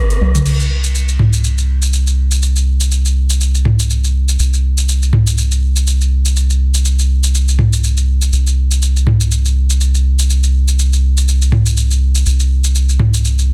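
A lightly swung sixteenth-note groove in steady four drives this short cut from a longer afro house track, its mood spiritual and earthy. The piece opens with a band accent at 0.0 seconds, and an electronic afro-pop drum kit comes in at 0.1 seconds, rolling straight into a fill at 0.2 seconds as the analog bass joins. The produced kit sits up front with metallic hi-hats, shaker, crash cymbal and toms, its tone overdriven and re-recorded in a small room. Underneath, the bass is round and deep, a dark, sine-like tone with a fast attack and long sustain that anchors the low end. The sound is dry and close, with a dense, heavily limited modern master that keeps the pair pressing forward to the end.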